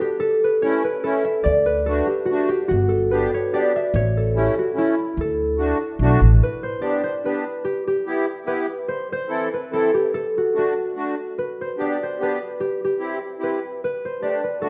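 A mellow, ringing concert harp opens this festive, jolly alpine folk dance at 146 BPM in 3/4, carrying the melody in D major, joined at 0.6 s by a sweet, reedy accordion accompaniment with light tremolo tuning and at 1.5 s by a woody, growly pizzicato upright bass. At 6.4 s the tune moves into G major and the bass drops out, leaving the thumb-plucked harp and airy accordion up front through a chord run that settles on Dsus4. A moderate recital hall reverb surrounds this section cut from a longer piece.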